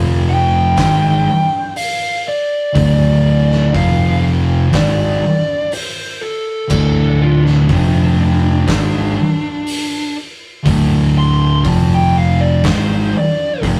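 Sludgy and ominous, this stoner and doom metal excerpt crawls at 61 BPM in D minor, with two dark fuzz-drenched rhythm guitars (one up front, one in the background) grinding between F5 and D5 over a growly, punchy overdriven picked bass before settling on an Fm13. A distorted fuzz lead guitar solos high above from 0.3 seconds, and an oversized, low-tuned acoustic kit joins at 0.8 seconds with a boomy kick, medium-tuned snare, hi-hat and gloomy crash cymbals pumping in a big room. The rough rehearsal-room sound carries tube saturation and moderate reverb, with the drums especially gritty.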